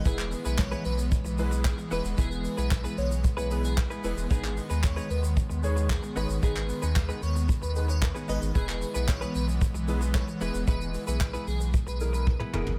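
Bittersweet yet energetic, this excerpt from a longer dance-pop track sits in a drop at 113 BPM in straight 4/4, moving from E to G#m and back to E. A round, deep sub bass and a punchy brush-played drum kit with handclaps, shaker and toms sit up front, while a breathy, detuned pad holds sustained chords and pumps under sidechain beneath an open baby grand piano accompaniment. A dreamy, bright lead carries the melody through chorus, phaser and a diffuse ambient delay, a clean, compressed electric guitar riff picks along in the background, and a drum fill arrives at 12.3 seconds, all in a light studio reverb.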